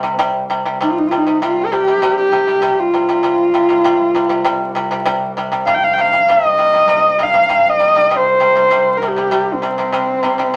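A wet studio reverb and a layer of vinyl crackle frame this vast, solemn piece of Mongolian traditional music, cut from a longer work and lasting about 10.6 seconds in a straight, steady 4/4. Up front, a husky, close horsehead fiddle carries the melody with expressive vibrato and portamento, while a dry, percussive pipa played with fingerpicks spins arpeggios beneath it. Further back, a smooth, bowed cello holds a quiet, even drone throughout.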